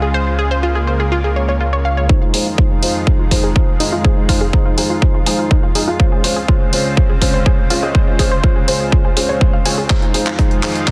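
A punchy, overdriven electronic kick lands up front at 2.1 seconds to drive this expansive progressive house excerpt in F minor at 123 BPM, joined by a layered kit of handclaps and hi-hats re-recorded in a small room as the track builds toward a drum fill at 9.9 seconds. Over Dbmaj7 and Fm7 chords, a thick, detuned sawtooth pad sustains through chorus and sidechain pumping, a bright unison pluck spins delayed arpeggios, and a felt-muted upright piano adds soft, intimate stabs with audible action noise. A dark, round analog bass anchors the opening, and the dense, heavily limited master carries light reverb and digital ambience.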